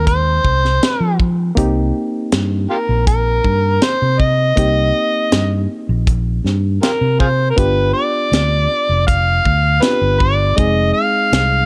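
An overdriven harmonica carries the melody up front in this smoky, brooding straight-eighth soul blues excerpt in C minor at 80 BPM, its gritty, amplified tone marked by vibrato, tongue slaps, scooped notes and a soft attack in a jazz-style solo. Beneath it, a barky, reedy electric piano with light overdrive comps through its built-in speakers, while a dark, round fingered electric bass and a tight funk drum kit, recorded in a small room with a high-tuned snare and tight kick, sit close and dry. The chords move from Fm7 to Cm7 at 1.6 seconds, then to G7 at 7.6 seconds before returning to Fm7.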